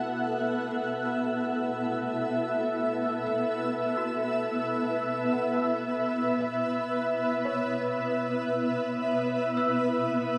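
A bright, blurred granular pad sits up front from the first moment, holding a rootless D/B chord in its own built-in reverb, while a very quiet, felt-muted upright piano traces a dark, intimate melody in the background. This melancholic, reflective ambient passage moves at a slow 57 BPM in straight 4/4, with a worn celesta adding delicate, bell-like arpeggios that sound slightly out of tune and vintage. A lush hall reverb surrounds the music through the full 10.4 seconds of this fragment, cut from a longer piece.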